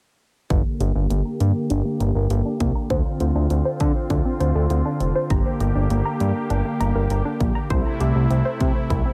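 Set in light reverb with a heavy wash of echo, this nocturnal, driving synth-pop excerpt in G dorian moves at 100 BPM in a straight 4/4, cut from a longer piece. A brassy, bold analog pad holds sustained, detuned sawtooth chords up front, its soft attack and vibrato shimmering through chorus as a filter sweep runs across the whole passage, from 0.5 to 9.1 seconds. Beneath it, a fat, thick analog bass with a nasal, saturated edge and a quick filter pluck sits prominently in the mix. A round, mellow analog pluck spins arpeggios with a short decay, a noise layer and tape echo trailing behind. The electronic pop drum kit, layered and produced, drives hi-hat and a punchy kick, while the harmony cycles through Gm, Dm7, Gm and C6.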